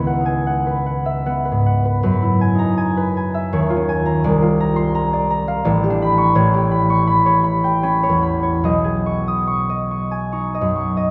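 A concert harp plays alone throughout this brief classical piece, its fingerpicked strings ringing and sitting up front in the sound. The mood is graceful and dreamy, moving in a rubato 3/4 at roughly 70-86 BPM in B major, with the instrument tuned to A4 = 442 Hz. The harp covers a broad span from A1 up to D#6, drifting through lush extended chords such as C#m11, F#9sus4 and A9 before settling on B69 at 8.7 seconds. A cathedral reverb with a long 4.5-second decay surrounds the acoustic harp, letting each note bloom into a spacious, hall-like haze. The passage is cut from a longer piece and lasts about 11 seconds.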